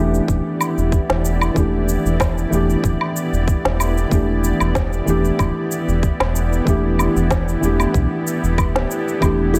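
A gently swung 94 BPM pulse in 4/4 anchors this earthy, mystical slice of organic downtempo in E minor, resting on a single Em7 chord throughout. A tight electronic kick and a kit of electronic shaker, woodblock and woody snare, both re-recorded in a large room, carry the groove, while a round, deep analog bass sits up front, sawtooth and sine blended with a fast attack and pumping against the kick. A felt-muted upright piano plays soft, intimate accompaniment with audible action noise, its vintage tone passed through tape echo and a low-pass filter that sweeps across the whole passage, also pumping with the kick. Above it, a tense, string-like drone of detuned sawtooth and triangle layers with ring modulation, vibrato and a slow attack holds sustained chords in its own reverb, and a very quiet quartz singing bowl rings a pure E5 with slow beating. At 9.5 seconds a plucked, hollow, woody kalimba arrives on E4 just as this cut from a longer piece closes, all set in light reverb.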